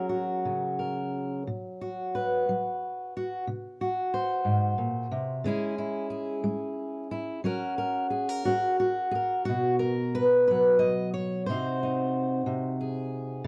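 Peaceful and warm, this short folk passage is a solo fingerpicked steel-string acoustic guitar in B major, moving freely in 6/8 at about 60 BPM with a rubato feel and tuned slightly low to A4 = 439 Hz. The auditorium-bodied guitar sits up front, ranging from G#2 to D#5 across a progression from F# through B5, G#7/B#, C#m and back, returning to B5 at 9.5 seconds. Light reverb and a dark production give the cut, lifted from a longer piece, an intimate glow.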